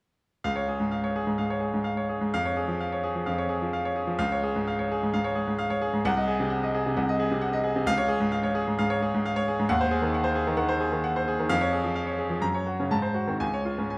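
Flexible rubato in 4/4 carries this brilliant, sparkling classical piano study, an excerpt lifted from a longer piece, with a solo grand piano sounding from 0.4 s to 14.0 s across a span from C2 to Bb5. The piano is bright and natural, placed up front with short sustain, and a moderate recital-hall reverb rings around it. Its harmony circles the home chord through dominant-seventh turns before a quick closing cadence touches a flat-nine dominant and settles at 13.4 s.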